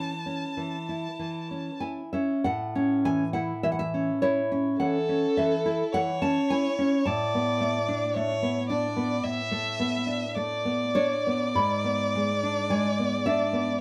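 A single bowed violin carries the lyrical melody with a rich, expressive tone, soft attacks, vibrato and portamento, sounding slightly distant. Beneath it, a fingerpicked nylon-string guitar sits up front with a deep classical body and audible finger squeak, moving from A to Bm7/A at 7.0 s and G#dim at 11.6 s. This short romantic duo in A major drifts in a slow, rubato 4/4 at 47-56 BPM, with a new passage beginning at 2.4 s, all set in a modest small-room ambience with a dark, warm production.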